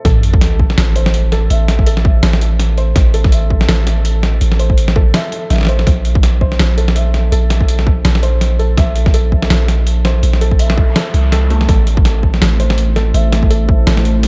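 Spacious and cinematic, this half-time drum and bass excerpt at 165 BPM moves with a swung feel over A minor and B-flat sus2 chords. A hard-clipped, overdriven electronic kick sits up front beside a gritty, pitched-down sampler-style kit of hi-hat and snare, while a deep, sine-toned 808-style bass holds long notes under soft, felt-muted upright piano arpeggios treated with digital delay. A sub drop opens the excerpt and a noise sweep sounds in the background before a detuned, sawtooth analog pad with chorus and sidechain pumping enters at 11.7 seconds, all within a dark, warm production.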